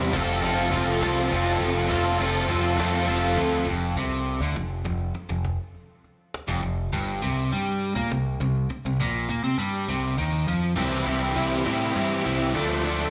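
Heard through a club PA with light reverb and room ambience, this upbeat, jangly indie rock snippet in a straight 6/8 at 68 BPM pairs a biting overdriven guitar riff with slapback echo and a bright, crunchy second guitar, thick with chorus, tape echo and slapback, that drops out at 3.7 seconds and returns at 10.8 seconds, all over a growling overdriven picked bass and a snappy, dry cajon played with hard hands and punctuated by fills, while a hollow, distant group handclap sits very quietly underneath until 3.6 seconds as the chords move from F through Fsus2, C5 and C to Dm.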